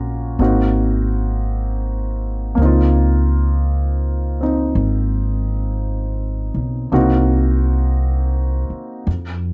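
The recording is dry and close, with a 1970s studio feel and little reverb, so both instruments sit up front. This wistful, melancholic jazz ballad moves at a slow 56 BPM in 4/4, with an easy swing on the eighth notes and tuning set slightly high at A4 = 441 Hz. The upright bass carries the low end with pizzicato gut strings, giving a woody, dark and thumpy tone, and it sounds a little louder than the piano. The concert grand plays accompaniment in a middle register, warm, intimate and natural with deep bass and the noise of its action audible. Cut from a longer piece, the excerpt moves through Ab9, Dbmaj13 and Cm7b5 harmonies, and the piano drops out at 9.1 seconds while the bass continues to 9.5 seconds.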